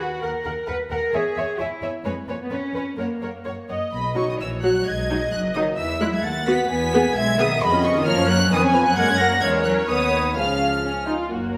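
A lively, cheerful classical-period string orchestra movement in B major at 130 BPM in 2/4 opens with a close, floating violin section singing the melody over a dark, woody second violin line with lush vibrato and a pure, soft-attacked viola accompaniment, while a distant cello section and rich double basses carry the bass, every section bowed sul tasto in a wet recital hall, with a new section beginning at 3.9 seconds in this fragment of a longer piece.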